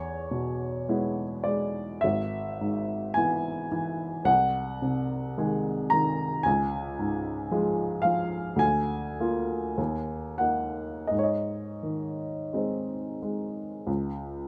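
Romantic classical nocturne for solo piano, tender and dreamy, drifting in rubato 4/4 at a slow 41-58 BPM, where a woody, up-front upright piano ranges from G#1 to Bb5 through close, detailed miking and light reverb, moving from E through Db and Ebm to Ab before this 14.5-second fragment of a longer piece breaks off.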